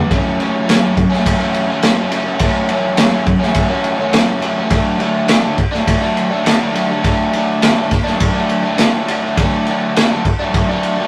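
An overdriven, double-tracked electric guitar opens at 0.0 s with a bright, picked riff in F# minor, joined almost at once by a crunchy breakbeat drum kit of punchy kick, medium-tuned snare and dark ride cymbal, both parts up front. At a straight 103 BPM in 4/4, this menacing garage rock fragment moves from F#m to D at 4.7 s, the saturated, rolled-off drums sounding gritty beside the compressed guitar. A rough rehearsal-room recording with warm saturation and a wet 0.6-second studio reverb gives the short cut its raw, confined character.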